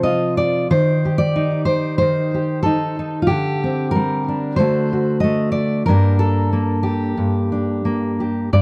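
Set up front with light reverb, this haunting, melancholic folk excerpt in G minor features a single dark, full-bodied, fingerpicked steel-string dreadnought guitar with tape echo and audible finger squeak, moving rubato around 92 BPM in 4/4 from F through Cm/Eb and D7sus4 to D7 before settling on Gm at 5.9 seconds.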